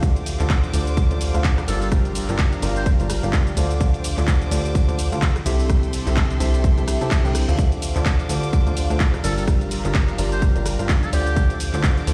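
Piano house at 127 BPM in D minor, soulful and energetic, with a 16th-note swing and a tuning slightly below standard pitch, cut from a longer piece. A punchy, up-front electronic kick drives the groove alongside a dry analog drum machine supplying handclaps, hi-hat, ride cymbal, rim click and shaker. A plucky, funky analog bass with a fast filter pluck and a concert grand piano riff, intimate with audible action noise, both pump against the kick, cycling through Dm7, Gm7 and Am7/C chords. A lush, distant violin section holds sustained chords alongside an airy, detuned pad treated with chorus and phaser. A buzzy, close-miked trumpet with a metal mute plays short jazz-style phrases with scooped notes and a digital delay, first at 1.7 seconds and again from 9.2 seconds, and a reverse cymbal rises in the background at 6.9 seconds. The mix is largely dry yet heard through a big sound system in a bare stone room, and it is loud overall.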